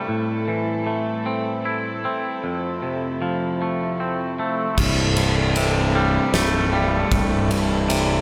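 A twangy, clean electric guitar carries up-front arpeggios treated with digital delay and slapback echo over dark, bowed studio strings holding soft, floating chords in this cinematic, euphoric post-rock excerpt at 77 BPM in 3/4, moving from Am7 to Fmaj7 before a growly, overdriven fuzz bass and a huge arena drum kit with a fat snare, punchy kick, crash and ride enter at 4.8 s on a C6 chord, all set in a lush hall reverb with a big arena sound.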